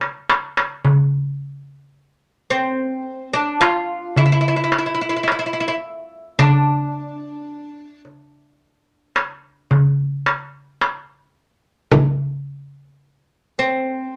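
A crisp, metal-shelled darbuka opens with a short fill, its soft-handed strokes compressed and saturated up front, setting a soulful, hypnotic Turkish makam groove in a straight 10/8 at 108 BPM counted in eighths. At 2.5 seconds a bright, woody fretless oud enters with plectrum-plucked double strings, carrying the melody between C4 and F4 in a small, reverberant room, tuned to A4 = 441 Hz. A deep, large frame drum, close and dry under hard hands, sounds briefly at 11.9 seconds before this cut from a longer piece ends.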